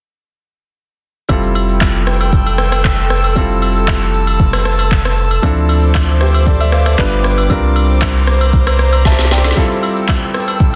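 A dense, heavily limited modern master with digital ambience frames this soulful, relaxed amapiano piece in straight 4/4. A polished grand piano comps through Fmaj9, Dm9, G7 and C9sus4 before returning to Fmaj9, joined at 1.7 s by an airy, breathy pad with chorus and sidechain pumping. Up front sit an electronic R&B drum kit with a soft kick, woody snare, rim clicks, shaker and handclaps, and a deep sine sub bass with a pitch-drop attack that stops at 9.5 s, just after a drum fill begins at 9.1 s, while close, dry agogo bells and woodblock tick along in the background.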